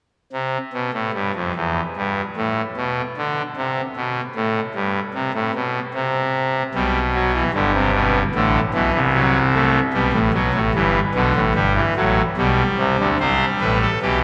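Elegant and stately, this is a classical, baroque-style four-part fugue for pipe organ, cut from a longer piece and moving at a measured 75 BPM in a straight 4/4. A single pipe organ on its trumpet stop plays solo from 0.3 to 14.2 seconds, spanning G1 to C5 with a brassy, bright tone, baroque voicing and an audible chiff at the start of its notes. It sits up front in the mix, tuned to A4 = 443 Hz. The opening passage unfolds over unaccompanied lines before the harmony settles through G/B, D7/A and G, then turns to C at 13.2 seconds as a new section begins. A cathedral reverb with a 4.8-second decay surrounds the organ and gives the counterpoint a grand, spacious resonance.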